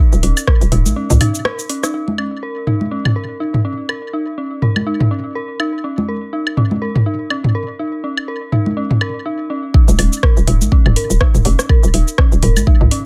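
A swung sixteenth-note groove in 4/4 drives this quirky, clinical minimal techno cut. An eerie, warbling FM synth bell riff with chorus, delay, a low-pass filter and sidechain pumping runs throughout alongside up-front layered electronic woodblock, toms and congas through a digital delay. The hollow, bouncy FM bass, deep kick and booming analog drum machine with metallic hi-hats, rim click and shaker sound briefly at the start, drop out around the break that begins at 1.0 seconds, and return for the drop from 9.7 seconds, all in a dry sound.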